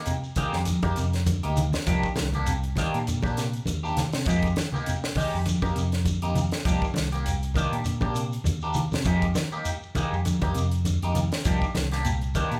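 Afrobeat at 100 BPM in C minor, funky and driving, with a light 16th-note swing. It moves through F9sus4, Cm9 and Fm11 as a band plays live in one room. A clean, hollow-bodied semi-hollow guitar picks arpeggios in the background through spring reverb, while a twangy, slightly broken-up electric guitar adds phased stabs. A dry funk kit with a high-tuned snare and tight kick, a grainy, distant shekere, ringing low-tuned congas and a dark, round fingered bass entering at 0.5 seconds drive this excerpt from a longer piece.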